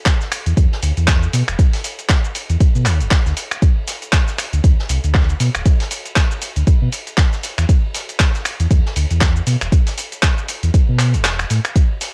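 This late-night deep house excerpt opens at 0.1 seconds with an electronic kick drum sitting up front, its deep, layered thump carrying a tape-warm softness, joined by a gritty sampler-style soul kit of finger snaps, handclaps, hi-hat and shaker that sounds compressed and re-recorded in a large room. At 118 BPM in 4/4, the groove has a 57% swing on the 16ths, giving the pattern a loose, rolling feel. Far behind, a soft-mallet acoustic kit adds dark ride cymbal and a medium-tuned snare, distant and roomy in the background. From 0.5 seconds a full sine sub bass with an octave layer moves between D1 and B2, sustained with a fast attack and pumping under sidechain. A short break arrives at 11.2 seconds, and the whole home-cassette recording stays dry and intimate, cut from a longer piece.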